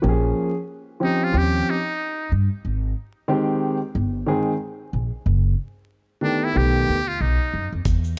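Swung sixteenths in 4/4 give this nocturnal, cool jazz-hop excerpt an unhurried sway, as a woody pizzicato upright bass and an intimate concert grand piano, with audible action noise and deep, smooth lows, move through A#m7, D#13, G#maj7, F#madd11 and B7alt. At 1.0 s a trumpet with a metal mute enters with a buzzy, thin, softly attacked solo line with light vibrato, sitting up front alongside the piano and bass. At 7.9 s a gritty, pitched-down boom bap kit arrives with hi-hat and a thumpy kick, joined by a distant, bright tube shaker, all within a small, dark room sound dusted with vinyl crackle.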